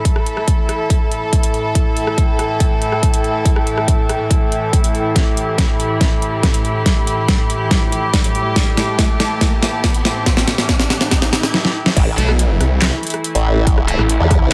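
A half-time 4/4 pulse at 141 BPM drives this aggressive, chaotic heavy wobble dubstep, tuned to A4 = 435 Hz. It opens with a punchy overdriven kick and a layered drum kit of deep snare, metallic hats, crash, handclaps and rim clicks under reedy, gut-toned bowed strings holding pumping, low-passed chords and an airy, breathy chorused pad, while drum fills and a background riser from 7.1 s build the tension. The drop at 12.0 s unleashes a formant-sweep wobble bass, a snarling, detuned sawtooth bass and tight, double-tracked distorted guitar stabs with digital delay, all set in light digital ambience.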